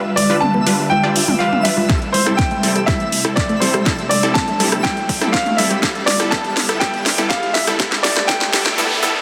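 A breathy pad with chorus and phaser, a full-bodied unison pluck playing arpeggios through tape echo, a barely audible sequencer bass and a twinkling granular texture open this dreamy, emotional progressive house build-up at 122 BPM, with filter sweeps moving across the synths over G7 and Am7 chords. A clear concert grand piano carries the melody through dub echo, joined by bright, detuned supersaw stabs under a low-pass filter and tape echo, overdriven house drums with a cracking snare and hi-hats, background congas, rim clicks and toms, and a punchy kick that enters at 1.9 s alongside a drum fill. A very quiet riser and noise sweep arrive from 2.2 s, while sidechain pumping moves the pad, pluck, piano, stabs, hats and percussion inside a lush hall reverb and a dense, heavily limited master.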